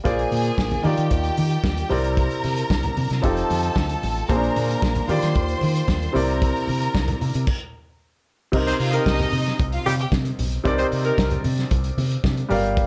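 Biting, lush strings and a polished, tube-saturated grand piano open this driving, glamorous disco excerpt, joined at once by a round, deep fingered electric bass, a vintage drum kit with a punchy kick, dark cymbals and gated reverb, and very quiet low-tuned congas; after a stop at 7.5 seconds, a tight, clear horn section punches in with stabs at 8.7 seconds, and the distant strings drop out at 10.1 seconds.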